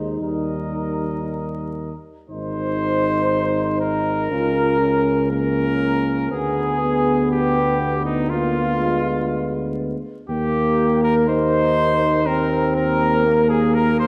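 Heard through vinyl crackle and a moderate scoring-stage reverb, this noble, stately classical brass quintet fragment unfolds with a rubato feel as an up-front cornet carries the melody over a warm, soft-attacked tuba bass, while a distant flugelhorn with vibrato sings a second line and a mellow French horn in the background joins a roomy trombone, both lightly vibrato, in the accompaniment, the harmony shifting to a diminished chord at 6.3 seconds.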